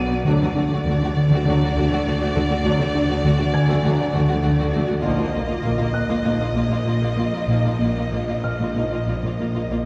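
A smooth, sawtooth-edged synth bass riff is the loudest layer of this uneasy, tense suspense film cue, joined by a string-like, detuned drone carrying its own reverb, a dark, intimate cello section with light vibrato, and a focused double bass section in the background. Above them, a rich violin section carries the melody with vibrato over a second violin line, an even, distant viola accompaniment, and a glassy, ethereal glass harmonica holding sustained chords. Very quiet horns hold soft-attack chords until 9.0 seconds, and a mellow grand piano with audible action noise adds a faint texture, all heard from further back in a wet concert hall as the uneven beats shift from D to Bbsus4 at 5.0 seconds in this excerpt from a longer piece.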